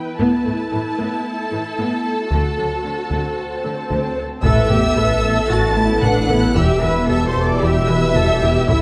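A straight 4/4 pulse at 113 BPM drives this tense, vast hybrid orchestral and electronic film cue, cut from a longer piece and tuned to A4 = 437 Hz, with heavy-stick taiko, compressed and saturated, playing beneath the orchestra. Lush bowed strings open the passage: a distant symphonic violin section carries a second line over warm violas with soft attacks and portamento, while rich, close cellos hold the bass, and a dark, tine-like FM synth pluck arpeggiates in the background through chorus, phaser and delay. The harmony moves from Asus2 to D, and a background electronic swell builds from 2.9 s into a sub drop. At 4.4 s the weight shifts as a smooth, close studio violin section takes the high melody, very quiet mellow French horns and clear trombones sustain chords, and a round, evolving analog bass riff with ring modulation joins a thick, beating detuned saw bass and a very quiet double bass section down low. 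The chords now run from Asus2 to Em, all set in a recital-hall reverb that lends the strings and brass a spacious, cinematic depth.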